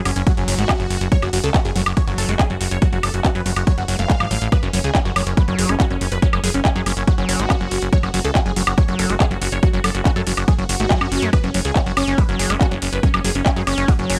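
A huge, detuned supersaw melody opens this alien, intense psychedelic trance passage at 0.1 s, arriving together with a squelchy acid riff, a punchy analog bassline and a layered techno kit of handclaps, metallic hi-hats and woodblock. The electronic kick drum, tape-warm and sitting up front, joins at 0.3 s and drives the straight 4/4 groove at 141 BPM in F# harmonic minor over an F#5 chord. The thick, compressed supersaw carries sub-octave weight, a phaser, sidechain pumping, delay and a grainy 12-bit sampler edge. Beneath it, the gritty, resonant acid bass rides a filter sweep with distortion, pumping and delay from the background, while the funky plucked bass keeps a fast-attack, decaying, tube-saturated punch at the front. The mix is dry, and this short section is cut from a longer piece.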